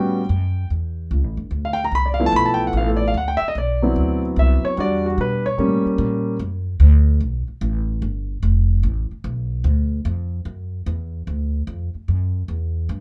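A warm, intimate concert grand piano takes a solo over pizzicato upright bass, opening this joyful big band swing excerpt at 148 BPM with a swung feel, its smooth, vintage tone carrying audible action noise through rich chords like A13 and A7b9. At 6.4 s the piano drops out and the key settles into D major, leaving the woody, dark bass up front on steel strings through D6, G9 and Dadd9 until 13.0 s. Light reverb surrounds both instruments, which are tuned slightly low to A4 = 438 Hz.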